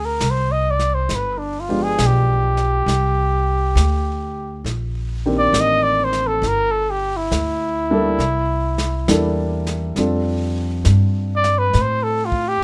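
A slow swung 4/4 at 68 BPM carries this tender, romantic jazz ballad excerpt, with a vintage brush drum kit entering at 0.2 seconds to give brushed snare, hi-hat and a punchy kick in a small, rolled-off room sound beneath a woody, thumpy pizzicato upright bass on gut strings. A breathy, mellow trumpet sits up front playing the solo melody with light vibrato and scooped notes, while a grand piano joins at 1.7 seconds with intimate chords whose action noise stays audible. Light reverb surrounds the ensemble as the harmony moves through rich extended chords before settling on F6.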